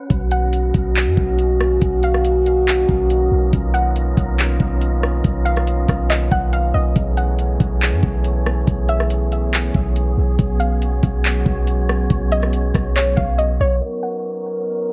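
Atmospheric cloud-rap hip hop with a blissful, dreamy half-time feel, where a deep, boomy 808-style bass and a smooth R&B drum kit with knocking kick, metallic hats, handclaps and rim clicks sit up front beneath mellow brass chords that pump with sidechain, while a soft, round chorused pluck melody with delay drifts over an airy, breathy wind-like texture in the background until a filter sweep arrives at 13.8 seconds in this excerpt from a longer piece.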